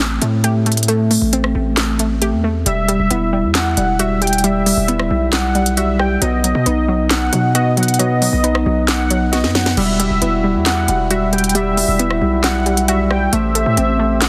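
Melancholic and dark, this half-time trap excerpt in E harmonic minor moves at 135 BPM over Am7, Emadd9 and B chords, with a crisp, sharp-snared trap kit and a heavy, aggressive distorted 808 bass sitting up front beneath a warbling, lo-fi pluck and mellow tine electric piano arpeggios softened by low-pass filtering and delay. At 2.7 seconds a velvety, detuned synth lead with vibrato enters as a second line, and after a drum fill a reedy accordion joins in the background with sustained chords at 9.8 seconds. The dense, heavily limited master carries light reverb.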